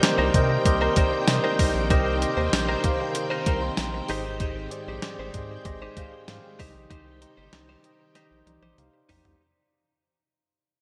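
A mellow tine electric piano, shimmering string-machine violins with ensemble chorus, a clean direct-recorded electric guitar riff with subtle chorus and delay, and an up-front 12-bit drum machine with a thumpy kick and gated reverb open this moody, nostalgic 1980s-style pop excerpt in C minor at 96 BPM, joined at 0.2 s by a round, dark analog bass, moving from Cm7 to Abmaj7 to Cm under a bright plate-reverb sheen as the music fades out and a drum fill arrives at 8.2 s.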